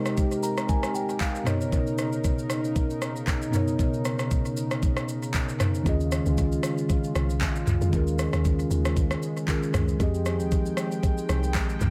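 A mellow, clean tine electric piano sits up front in this relaxed amapiano excerpt, opening with a short fill from 0.2 to 1.7 seconds over a smooth, detuned sawtooth pad with chorus and a slow attack. A knocking electronic R&B drum kit of kick, handclaps, rim click, shaker and toms, treated with analog delay, carries a swung 16th-note feel, and at 5.9 seconds a woody, punchy FM log drum bass arrives with a fast attack and decaying notes. Light reverb and digital ambience give the whole mix an echo-heavy, laid-back glow.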